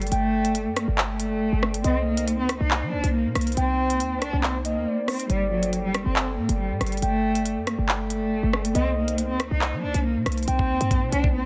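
An expressive bowed cello with vibrato and portamento carries the melody up front, softened by a low-pass filter, over a tense, cold half-time drill groove cut from a longer piece. A smooth, detuned sine lead with chorus and tape echo adds a second line, while ethereal glassy harmonica chords hover in the background over Gsus2 and Cm7. A punchy, tight 808-style bass and an electronic kit of knocking kick, crisp hi-hats, handclaps and rim clicks sit prominently in the dry, dense, heavily limited mix, with a drum fill at 10.5 seconds.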